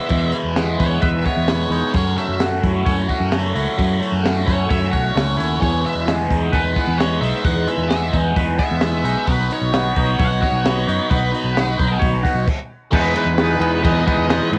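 A dark octave-fuzz lead guitar solo with analog delay opens this upbeat, carefree indie rock excerpt at 131 BPM in E major, riding over a biting overdriven guitar with phaser, a twangy, subtly chorused electric guitar, a punchy fingered bass and a compact cocktail drum kit with a high-tuned snare and dark cymbals, all carrying the character of a home cassette recording in a lightly reverberant room, until a brief stop at 12.5 seconds gives way at 12.9 seconds to a barely audible, flute-like tonewheel organ with key click and rotary speaker on a closing Emaj7.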